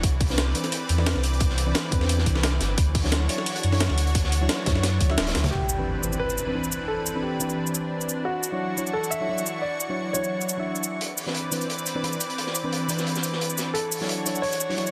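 Liquid drum and bass at 175 BPM in C major, warm and dreamy, with a mellow, round FM electric piano and a lush, detuned sawtooth pad, both chorused, drifting between Cmaj9 and Dmaj9 over a gritty, compressed sampler-style breakbeat and a darker, saturated second kit with filtered hats and snare. A deep sine sub bass and an overdriven, tight electronic kick anchor the opening until the kick drops out at 5.2 s for a band accent and drum fill. At 5.5 s an electronic impact lands and a worn baby grand piano carries the melody through a digital delay, while the crunchy kit returns at 11.0 s, all under moderate plate reverb and a dense, heavily limited master.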